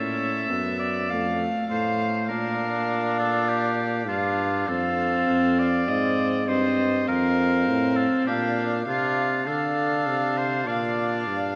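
The clear oboe leads this festive, courtly consort dance in a renaissance style, carrying the melody with light vibrato up front at 100 BPM in a straight 4/4. A dark, nasal violin with a distant gut-string tone sings a second line above it, while a warm, reedy viola fills in the accompaniment and a mellow trombone holds the bass. The harmony moves through chords such as F, Bb, Ab and Dm, and the whole consort sits in a wet church reverb with a soft top end, cut from a longer piece and lasting about 11.6 seconds.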